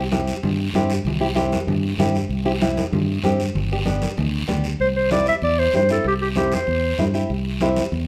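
Cumbia at a brisk 193 BPM in C major, this danceable, festive clip from a longer piece rides on a full-bodied, fingerpicked nylon-string guitar and a round, up-front fingered electric bass moving from C to G. Ringing, hard-handed congas sit in the background beside a raspy, close guiro. At 4.8 s a warm, classical-style clarinet enters as an up-front solo melody over the return to C, all set in a moderate large-studio reverb.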